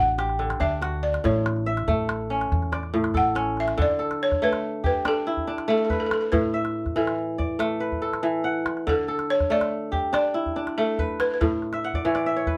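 Joyful and flowing, this West African traditional excerpt moves at 94 BPM in a straight 12/8 in D major, with a fingerpicked kora spinning ringing, crisp arpeggios up front while a woody, buzzing balafon played with rubber mallets carries the melody. A small, close calabash keeps the percussion going from 0.2 seconds, and a growly pizzicato upright bass anchors the opening before dropping out at 3.7 seconds, as the harmony shifts between D and A chords. The band plays live together in a small room with moderate reverb, and the kora closes with a fill from 11.7 seconds.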